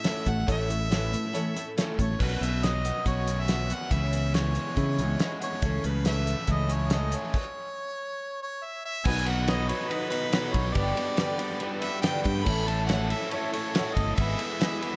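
A clear, pop-style harmonica with light vibrato carries the melody from the first second of this hopeful, open-road folk and heartland rock excerpt, its line ringing through analog delay over a straight 140 BPM pulse in 4/4. Beneath it, a shimmering, octave-doubled twelve-string acoustic guitar sits in the background, while a biting, double-tracked overdriven electric guitar plays a riff through its own analog delay. A cloth-damped, thuddy drum kit with a fat snare, tight kick and dark cymbals sits up front alongside a round, fingered electric bass, and a very quiet, brilliant grand piano adds short-sustained accompaniment that drops out briefly and returns at 5.6 seconds. The chords move from A through Bsus2 and C#m7 before a stop from 7.3 to 9.1 seconds, after which a floating, sul tasto string section enters with soft-attack sustained chords under a progression of B, G, A and E/G#. The echo-heavy mix, touched with light reverb, gives the whole passage an expansive, forward-looking feel.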